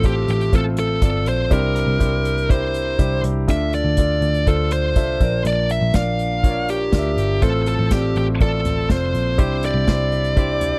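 Piano-driven pop at 122 BPM in 4/4, earnest and dramatic, where a high-gain distorted lead guitar carries the melody between G4 and F5 over a clear, woody upright piano with long sustain, a dark, foam-muted picked electric bass sitting round and up front, and an acoustic drum kit played with bundle sticks, featuring a punchy kick and medium-tuned snare, all captured as a dry, close 1970s-style studio recording moving through F/A, Cadd9, Dm and Bb in a brief section cut from a longer piece.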